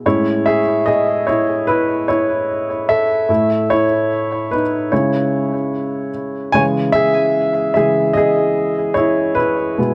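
A woody, intimate upright piano carries this short, heartbroken pop fragment alone from start to finish, sitting up front with its action noise clearly audible and a touch of digital delay trailing its notes. At an unhurried pace, it moves through Amaj7 and Aadd9 before settling on C#m around 4.9 seconds, with a new section opening at 6.5 seconds. Light reverb and a dark, warm production give the emotional playing a polished, close-up feel.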